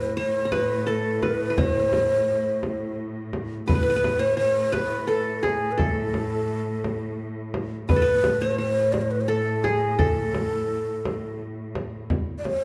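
A breathy, hollow ney carries the melody up front in this passionate Arabic maqam ensemble passage in a straight 6/8, its end-blown reed cane tone close and intimate. A bright-edged, plectrum-plucked qanun adds a second line until about 11.3 seconds, while a deep frame drum played with soft hands enters at 0.5 seconds and a lush, bowed cello section holds a smooth, distant drone with vibrato beneath them. A wet recital hall reverb surrounds the ensemble, and the fragment is cut from a longer piece.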